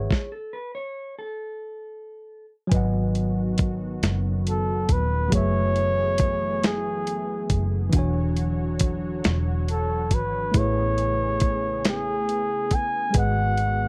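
A slow, straight six-eight sway carries this yearning, late-night R&B fragment, with gritty, compressed sampler-style drums and their thumpy kick up front, a round, foam-muted electric bass underneath, and a worn, slightly out-of-tune tine electric piano, lightly overdriven through its built-in speakers. A dark, clean electric guitar adds a brief second line during the stop-time opening, and at 2.7 seconds a detuned sawtooth analog pad with chorus brings in sustained chords as the harmony moves from G#m7 through F#m11, E13 and Amaj9. From 4.5 seconds a breathy, whispered flugelhorn with light vibrato carries the melody, close and intimate, in a dry 1970s-style studio sound.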